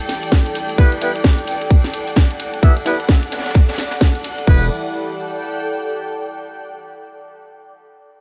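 A swung 130 BPM bass house groove in 4/4 and E minor opens with a tight, up-front electronic kick entering at 0.3 seconds over a garage kit with a cracking snare and bright hats, while a brushed jazz kit and a grainy egg shaker sit in the background. A dark, detuned analog pad and a blurred granular cloud pad pump against the kick, and a dark, vintage horn section punches tight stabs through low-pass filtering and dub echo for an aggressive, swaggering mood. At 4.5 seconds a growling, overdriven FM bass hits a low E as the drums drop away, and from 4.7 seconds the cloud pad trails on alone until 6.3 seconds in this cut from a longer piece.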